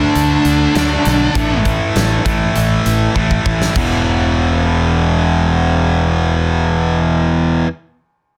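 The recording is dense and heavily limited, with a light reverb, and it is cut from a longer hard rock piece in a driving, aggressive 4/4 at 100 BPM. A dark, high-gain lead guitar with distortion and digital delay opens with a brief solo line before dropping out at 1.6 seconds. Underneath, a bright, tight distorted guitar sits up front, and an overdriven semi-hollow guitar with a hollow-body tone sits in the background; both carry the picked riff over D5 and A5 chords that later move to E5. A growly fingered electric bass with fuzz and overdrive punches hard in the front of the mix. A big-room acoustic kit with bright cymbals, a medium-tuned snare and a tight kick drives the groove, plays a fill from 3.2 seconds and stops at 3.9 seconds, leaving the guitars and bass to carry on.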